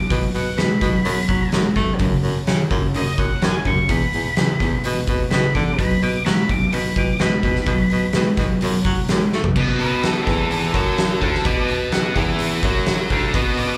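Gritty and raunchy, this short cut from a longer blues rock and southern rock number in 4/4 has a straight feel and the rough-edged energy of a live club gig heard through the venue's PA, with a moderate room reverb around it. A double-tracked, distorted electric guitar drives the riff with a bright, picked attack, while a dark octave-fuzz lead guitar carries the melody up high, its tone thickened by slapback and tape echo. In the bass role, a bright baritone saxophone plays in a jazz style with light vibrato, sitting present in the mix. The oversized, low-tuned drum kit sits up front and saturated, with a boomy kick, fat snare, dark cymbals and a pumping big-room sound across kick, snare, hi-hat, toms and crash. The chords move through B5, F#5 and E5 before returning to B5, and a drum fill at 9.3 seconds leads into a new section at 9.6 seconds that carries the piece to its cut-off.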